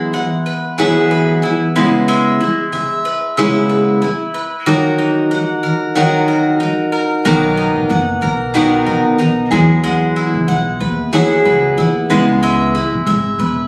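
Recorded on a phone in the room with light studio reverb, this sunny, carefree acoustic pop cut moves at 93 BPM in 4/4 with a gentle sixteenth-note swing, tuned to A4 = 436 Hz, as a full-bodied, up-front picked jumbo steel-string guitar carries the accompaniment through Eadd9, C#m7, D#m and Bmaj7 while a bright bowl-back mandolin's double strings ring out arpeggios, and a woody, thumpy gut-strung upright bass enters pizzicato at 7.3 seconds.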